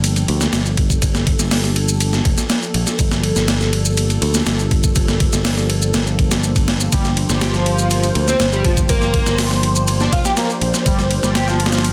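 Gritty and energetic, this breakbeat excerpt drives along at 122 BPM in a straight 4/4, cut from a longer piece and resting on a single Gm9 chord in G minor. A compressed, sampler-style drum kit sits up front with a thumpy kick, a high-tuned snare, hi-hat and ride cymbal in studio ambience, joined by a layered electronic shaker roughened with overdrive. A picked electric bass, round and direct, holds the low end up front, while a swirling, detuned sawtooth pad sustains chords underneath through phaser and chorus, its level pumping against the sidechain. At 6.9 seconds an overdriven synth lead enters with a screaming, guitar-like riff, bright and distorted with vibrato, tube saturation, ensemble chorus, phaser and tape echo. The mix sits in a moderate small room and is dense and heavily limited in a modern style.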